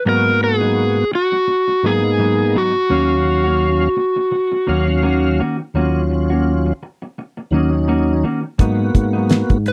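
A dark, overdriven slide guitar sings the melody up front in this smoky, soulful straight-eighth soul blues, over a full tonewheel organ with light overdrive, chorus vibrato and a slow rotary speaker and the clean, compressed stabs of a mellow electric guitar, until a dry 70s drum kit with a fat snare and tight kick and a fingered electric bass enter at 8.6 seconds in this close, 1970s-style studio recording.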